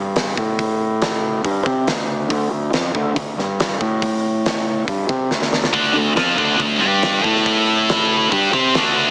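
In a straight, driving 4/4 hard rock groove, a growly, fuzz-overdriven fingered bass opens and is joined at 0.2 seconds by a big, dark rock kit with a punchy kick, fat snare and hi-hat, and after a drum fill at 5.3 seconds a bright, double-tracked high-gain guitar riff enters at 5.7 seconds over Dm, G5, A5 and D5, the heavy cut from a longer piece sounding squeezed through heavily compressed, small-speaker radio tone with light small-room reverb.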